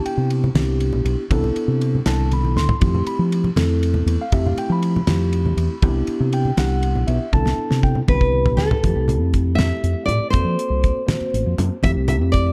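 Electric jazz fusion in a straight 6/8 at 80 BPM, funky and soaring, moving through lush Cmaj9 and Fmaj9 harmony and settling into F major from 8.8 s, where a Gbmaj7#11 adds a brief colorful twist. A mellow tine electric piano with subtle chorus comps from the start, while a round, punchy fingered bass and a damped 70s kit with a fat snare, tight kick and dark cymbals sit up front, with fills around 2.2 s and 7.3 s, and low-tuned congas played with soft hands murmur in the background. At 8.1 s a fingerpicked nylon-string guitar enters with a classical melody, all wrapped in a small, dark room sound, in this cut from a longer piece.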